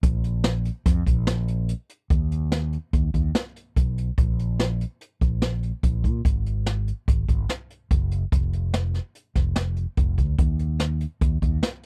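A dry, close 1970s-style studio sound frames this intricate, driving progressive instrumental excerpt in 5/4 at 145 BPM with a straight feel, where an up-front amped fretless electric bass and a natural small-room brush drum kit, with its boomy kick, medium-tuned snare and hi-hat, push through a short opening passage before shifting into a new section at 2.1 seconds.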